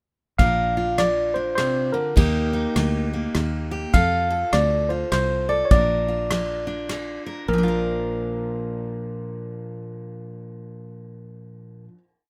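From 0.4 s, a barky, lightly overdriven tine electric piano sings motif-based song phrases over a full-bodied dreadnought guitar played fingerstyle with an alternating, palm-damped thumb, a dark, round, foam-muted fingered electric bass playing root and fifth with walk-ups, and a tight acoustic kit played with bundle sticks on kick, ride and rim click, all forming an easygoing, heartfelt honky-tonk and classic country piece at 101 BPM in Bb major with a swung 3/4 groove and a dry, up-front sound, until the drums stop at 7.1 s and the other parts hold a final chord from 7.5 s to 11.0 s.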